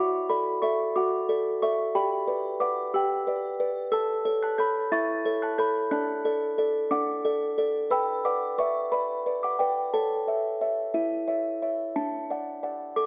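A classical lullaby for solo music box, this dreamy, tender excerpt moves gently at 60 BPM in a lilting 6/8, settled in D major. The large music box carries everything alone from start to finish, its delicate, tinkling plucked tones ranging from D4 up to A6 and sounding slightly out of tune, which adds a fragile charm. Close-miked and up front, the instrument itself sounds dry and full, while the production around it is dark and warm, set in a moderate scoring-stage reverb. The harmony drifts through a soft cadence-like cycle of D, E minor, A, D, G and A, arriving home on D at 12.0 seconds as a new section begins. Cut from a longer piece, it stops just after that return, at 13.1 seconds.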